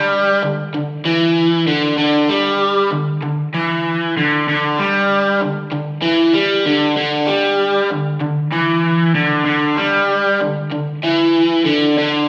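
Rock at 96 BPM in 4/4 with a straight, upbeat yet wistful feel, this short cut from a longer piece features a raw garage electric guitar playing solo, bright, picked and double-tracked up front with overdrive and phaser, ranging between D3 and G3 in a wet recital hall reverb for its full 12.3 seconds.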